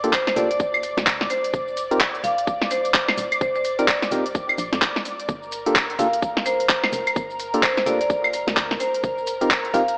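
An up-front garage drum kit with a cracking snare, crisp hats, claves, handclaps and shaker drives this bouncy, soulful two-step garage cut at 128 BPM in G minor, swung on the 16ths and joined by a tight, tape-toned electronic kick. Hollow organ stabs with chorus and tape echo and a bright, hard-mallet marimba melody ride over an airy, breathy pad that pumps against the beat, while a dark, organ-like FM bass sits in the background. The harmony moves between Gm9 and F9sus4, and the whole mix has a lightly reverberant, lo-fi AM radio character.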